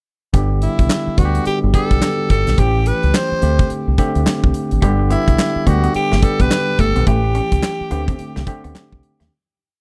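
Upbeat and bouncy, this short new jack swing piece in G major moves at 107 BPM with a hard 16th-note swing, built on a huge arena drum kit whose punchy kick and clap-layered snare sit up front beside a round, dark fingered bass line full of muted ghost notes and chromatic approach notes. A barky, bell-like tine electric piano supplies syncopated chord stabs with grace notes, while a raspy, gritty tenor saxophone carries a hook-driven solo melody with scooped notes and light vibrato. At 4.8 seconds a compressed, clean electric guitar with analog chorus slips in behind with a muted single-note line, and the dry, close 1970s-style sound fades out from 7.1 seconds.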